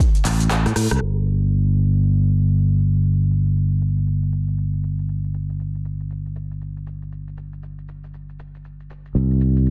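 A growly, bright fingered electric bass sits up front in this deep, late-night deep house passage, moving between G1 and A2 through a low-pass filter at 118 BPM with a swung 16th-note feel. Beneath it, an electronic, layered drum kit with metallic hats, handclaps, rim click, shaker and crash is overdriven and placed in a studio reverb; it plays a fill from 0.5 seconds, and the band hits an accent at 0.9 seconds. From 1.0 seconds a filter sweep runs across the rest of this cut from a longer piece, with a dry, dense and heavily limited modern master.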